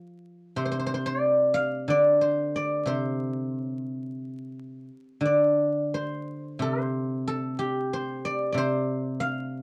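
Serene and elegant, this brief excerpt of Chinese traditional music features a solo guzheng played with fingerpicks in a free, rubato feel, its silvery, ringing tone sitting up front in a dry, close 1970s-style studio sound with light reverb and vinyl crackle.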